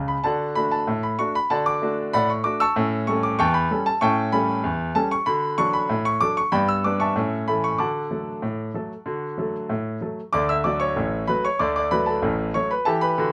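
Lively and cheerful, this short ragtime piano clip moves at 95 BPM in a straight 2/4, set in D major. A single concert grand carries it alone from 0.0 to 13.3 seconds, opening with a fill before the first strain settles in. The instrument sounds clear and polished, sitting up front with a present tone, deep bass in its lower register and a short sustain that keeps the notes crisp. The harmony moves from D to A7 and back to D, then passes through G and A before resolving on D. A new strain arrives at 10.3 seconds, and light reverb gives the room a touch of air before the passage cuts off, taken from a longer piece.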